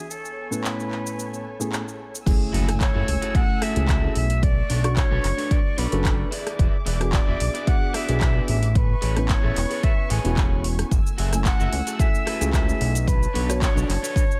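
A fat, detuned sawtooth bass and a punchy, up-front electronic kick drive this sensual, cosmic nu-disco cut in F# minor at 111 BPM from the drop at 2.3 s, where a very quiet impact lands. They join a breathy, chiffy jazz flute melody carrying 12-bit sampler grit and delay, a dark, boxy grand piano that opens under a filter sweep and pumps with delay, veiled con sordino strings breathing with sidechain in the background, and a pop kit of metallic hats, handclaps, rim clicks, shaker and crash. A slightly broken-up, picked electric guitar riff adds lush chorus and lo-fi sampler texture, set in a dry mix with faint mains hum.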